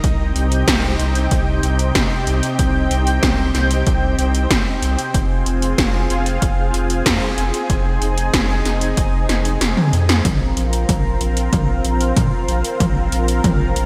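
A straight 4/4 synthwave groove at 94 BPM is driven by a punchy, tape-tinged electronic kick and up-front 80s-style pad drums with metallic hats and gated reverb on the snare and toms. A drum fill arrives at 9.3 s, the kick drops out, and a new section begins at 10.3 s. Alongside, a round, deep analog bass with a nasal edge sits low, while an up-front, silky, string-like sawtooth pad with slow attack and ensemble chorus sustains chords that move from Cm to Fm and on to Bbsus2; both pump with sidechain. Cut from a longer piece in F minor, it feels cinematic and driving, set in a lush hall reverb with a bright 1980s-style digital sheen.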